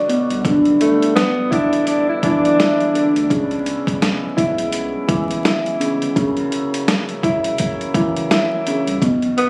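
A dark, woody upright piano with audible action noise and cassette tape haze, along with a percussive tonewheel organ with key click and slow rotary speaker, opens this tough, gritty boom-bap hip-hop excerpt at 84 BPM with swung 16ths. It is soon joined by a thumpy, compressed sampler-style drum kit up front and a round analog bass in the background. A breathy tenor saxophone with subtone, scooped notes and tape echo plays a distant, roomy solo melody from 0.8 to 3.3 seconds over an Em7 chord, before the harmony moves through C#m7 and F#7. Everything is wrapped in vinyl crackle and club reverb, as if captured on a phone in the room.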